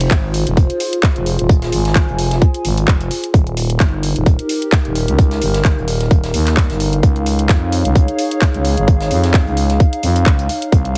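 A growling, thick FM bass with overdrive and sidechain pumping, garage handclaps and hi-hat, and a warbling, nostalgic lo-fi pad with chorus and its own reverb open this aggressive, bouncy bass house excerpt together at 130 BPM with a 16th-note swing. They are joined at 0.1 seconds by a tight, up-front electronic kick and a very quiet brushed acoustic kit, all moving through Fm, Ebadd9 and Dbadd9 in a heavily compressed, radio-like sound with light digital ambience.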